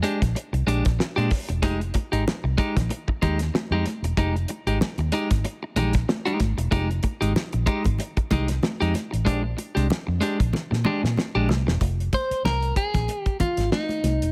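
A 94 BPM groove in 4/4 with a 16th-note swing of 56% drives this funky excerpt in F dorian, cut from a longer piece. A damped 70s drum kit sits up front with a fat snare, tight kick and hi-hat, joined at 0.2 seconds by a vintage muted fingered electric bass whose dark, round, foam-muted tone is amped and up front. A clean electric guitar, picked and compressed, supplies accompaniment over chords moving from Bb13 to Fm9 and back to Bb13. High-tuned congas with a thin, bright skin enter at 1.6 seconds, sitting damped in the background. After a drum fill, the guitar takes a short solo from 11.8 seconds as the harmony settles on Fm7, all set in a studio reverb.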